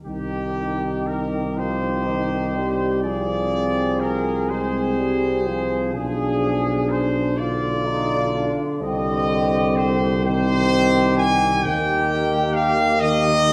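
A bright trumpet section opens up front with the melody while a distant, softly vibrato flugelhorn carries a second line, in this serene, tender hymn-like classical passage for brass band, cut from a longer piece and set in C minor at a slow, rubato 41 BPM in 6/8 with uneven beats. From 0.1 s a roomy solo euphonium and a tight trombone section fill in warm accompaniment in the background, while a mellow, smooth-topped tuba anchors the bass up front with a light vibrato. The harmony moves from C minor through diminished colours before settling on E-flat, all carried on the lingering 1.6-second reverb of a recital hall or church.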